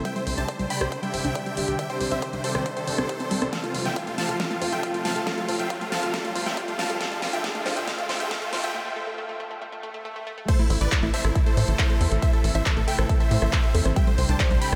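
Uplifting trance at 138 BPM in A minor, this emotional, euphoric excerpt builds from the start over a huge, detuned supersaw melody with delay and sidechain pumping, joined by a background unison pluck on a second line, while a silky, string-like analog pad holds sustained chords with ensemble chorus and a very quiet unison pluck spins delayed arpeggios through a filter sweep. A tight, driving sequencer bass, a layered big-room kit with a massive snare, crash, handclaps, hi-hat and rim click, and a punchy, up-front kick push through a drum fill from 3.5 seconds, as a faint riser and swell carries the build to a break at 8.7 seconds. The drop lands at 10.5 seconds on A minor, and the whole mix is drenched in a dreamy cathedral reverb.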